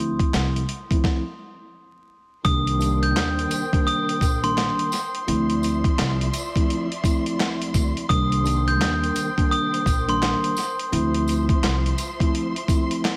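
Gritty and moody, this swung boom-bap hip-hop fragment rides an up-front, compressed sampler-style kit of thumpy kick, snare, hi-hat and handclaps, a woody pizzicato upright bass and a mellow, filtered tine electric piano through a brief stop ending around 2.5 seconds, when a ringing, bell-like glockenspiel melody with delay and a dark, lush bowed string section with vibrato and portamento join, followed shortly by a jingly tambourine, all beneath light reverb and vinyl crackle.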